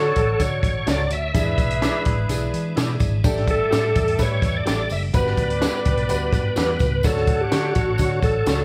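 Uplifting and joyful, this short cut from a longer uptempo 1960s-style soul piece moves with a straight, buoyant 4/4 feel, the band playing live together in one room under light reverb and a layer of vinyl crackle. Up front, a reedy tonewheel organ carries the melody with key click, chorus vibrato, a fast-spinning rotary speaker and a touch of tube grit, while a tight, clear horn section with light vibrato supplies a punchy second line. Beneath them, a woody upright piano with long sustain plays the accompaniment, a second organ in the background holds piping, scooped chords through a stopped rotary speaker, and an electric guitar through a small old amp adds slightly broken-up, lo-fi stabs with tremolo. A dark, round, foam-muted electric bass anchors the low end. Entering at 0.2 seconds, a compact cocktail kit with a high-tuned snare, punchy kick and hi-hat sits up front, joined by a jingly tambourine tucked behind, as the chords move from Dmaj7 through E7, A7sus4 and Gmaj7 before returning to Dmaj7.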